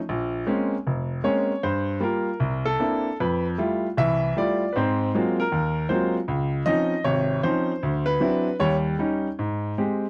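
A swung 4/4 feel at 155 BPM, loosened by rubato, carries this brief solo jazz excerpt cut from a longer piece. The mood is sophisticated and relaxed, with a single baby grand piano playing alone from 0.1 to 10.0 seconds across a range from F1 to E5. Its tone is clear, natural and intimate, placed up front with the sound of the instrument's action audible beneath the notes. The harmony moves through rich extended chords, opening on Bbm9, passing through Fmaj9 and Dbmaj9, and settling on Abmaj7 at 9.4 seconds. A light reverb touches the piano, while the dry, close recording has the character of a 1970s studio session.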